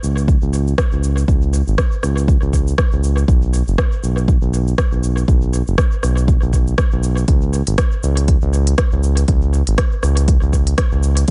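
A mellow, up-front sawtooth-and-triangle synth bass, smooth and sustained with tube saturation and sidechain pumping, opens this spiritual, earthy afro house excerpt alongside a produced drum kit of smooth hi-hats, rim click and shaker washed in tape echo. A deep electronic kick sits up front from 0.3 seconds, and a gentle swing on the sixteenths carries the groove through to 11.3 seconds. The whole mix is echo-heavy, with a dim, rolled-off top end.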